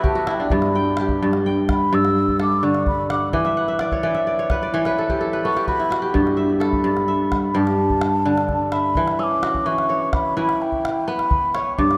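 The kora sits up front, fingerpicked and ringing, spinning crisp arpeggios that span from G2 to G5 throughout this 12-second clip of West African string and xylophone music, with fills at the very start and again from 3.4 to 6.1 seconds. Above it, a mellow, hollow wooden flute carries the melody between G5 and E6, its airy tone marked by vibrato, a soft attack and rolled-off highs, with a tape echo trailing each phrase; it takes a solo through the first 6.1 seconds. A deep calabash adds quiet percussion beneath, with a live-room character. The piece moves at 85 BPM in a flowing 12/8 with a straight feel in G lydian, circling through Em, G and E5 chords. Soaked in a long church reverb, the dreamy mix gives the whole passage a warm, flowing mood.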